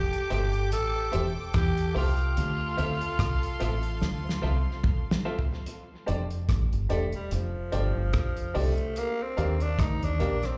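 A raspy, growling tenor saxophone opens this romantic, tender lovers rock reggae excerpt at 73 BPM in F major, alongside a bowed, sul tasto violin section and a deep, round, foam-muted dub bass, with a dry, fat-snared 70s drum kit, an intimate baby grand piano with audible action noise, and slightly broken-up electric guitar stabs in the background. The saxophone and strings carry tape and slapback echo, and after a drum fill from 4.0 s the violins stop at 5.6 s, while the saxophone takes a solo over the band from 5.7 s. The band is heard as a live gig through the venue's PA, set in small-room ambience with club reverb.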